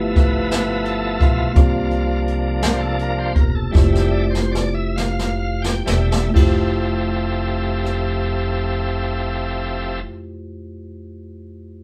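Uplifting and reverent, this slow gospel passage in 6/8 and F major moves at roughly 40-58 BPM in a straight feel, taken from a longer piece and played live in one room with light reverb. A bright, shouting tonewheel organ, lightly overdriven through a fast rotary speaker, takes a solo over the first 6.3 seconds while the band slows down and the brushed drum kit, up front yet roomy with dark cymbals and a boomy kick, plays a fill. A woody, thumpy pizzicato upright bass anchors the chords moving from G13 to C7sus4 to Fmaj9, and the mellow, clean tine electric piano carries on alone after 10.0 seconds.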